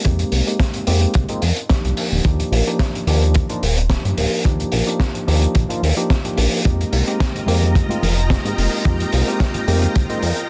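Nu-disco with a groovy, sensual feel at 109 BPM in F dorian, this clip from a longer piece swings its 16ths over an Fm11 to Ebmaj7 vamp, where a clean tine electric piano runs through a low-pass filter sweep and tape echo above a glossy, detuned chorused synth bass, a tight, saturated kick drum and a gritty, dark breakbeat kit with hi-hat and high-tuned snare, before a lush string machine with ensemble chorus and sidechain pumping enters at 6.6 seconds and soft, damped congas sit in the background from 7.3 seconds, all in a small room and a dense, heavily limited modern master.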